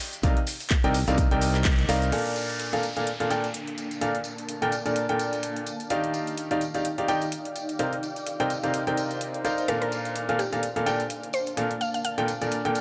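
A bright, up-front baby grand piano carries the riff through this euphoric piano house excerpt at 127 BPM in Bb major, pumping against a punchy electronic kick and a growly fingered bass that both drop out after about 2 seconds, while a house kit of handclaps, metallic hats and shaker drives on with a background tambourine and a brief, gritty, saturated breakbeat kit at the start. From 2.1 seconds a downlifter sweeps in, from 2.9 seconds a cloudy, mellow granular pad settles beneath the chords of Bbmaj7, Ebmaj9 and Cm11, and at 9.7 seconds a woody, round synth pluck with chorus and tape echo adds a melody. The dry, gritty hardware sound sits inside a lush hall reverb, with a light swing on the sixteenths giving the groove its feel-good bounce.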